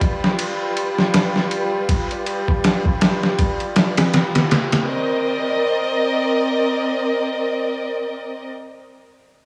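A rich chamber violin section holds bowed, vibrato-laden chords coloured by a filter sweep and vintage 12-bit sampler grit, alongside a compressed, pitched-down boom bap drum kit of thumpy kick, medium-tuned snare and ride cymbal, setting a melancholic, hypnotic trip hop mood at 80 BPM in C minor with a swung 16th-note feel, until the drums stop at 4.9 seconds as the harmony moves from G7 to Cm9 and the strings carry on alone in a lush hall reverb to the close of this excerpt at 8.5 seconds.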